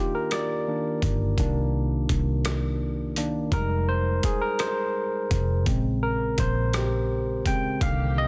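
Sultry and late-night, this slow six-eight R&B excerpt moves at 56 BPM, with a barky, lightly overdriven tine electric piano up front carrying the chords from Cm9 through Fm9 to Bbm9 as the featured solo voice. A gritty, sampler-style drum kit with a thumpy kick, hi-hat and rim click joins at 0.3 seconds, and a dark, round, foam-muted fingered electric bass enters at 1.0 seconds. Just before the cut at 7.8 seconds, a bowed string section with vibrato and portamento and a clear, punchy horn section with stabs appear in the background, all set in light reverb under a dense, heavily limited master.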